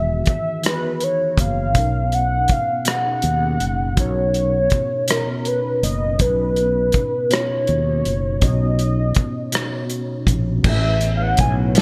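Slow R&B in a straight 6/8 at 54 beats per minute, tender and intimate, this short cut from a longer piece carries a bright 1980s-style digital sheen with light reverb and small-room ambience. A velvety sawtooth synth lead with chorus and vibrato sings the melody up front, its detuned unison giving it a vintage warble. Beneath it, a worn, slightly out-of-tune tine electric piano, lightly overdriven and thickened with ensemble chorus, holds the harmony over Emaj9 moving to Bmaj9, while a round, punchy fretless bass anchors the low end. The acoustic soul kit enters at 0.3 seconds with a tight kick, medium-tuned snare, rim clicks, hi-hat and dark crash cymbals, its gated reverb sitting close and rolled-off on top. At 10.6 seconds the harmony shifts to Amaj9 as a nasal, slow-blooming analog pad with chorus enters softly in the background, and a distant, roomy horn section adds a brief stab at 11.7 seconds.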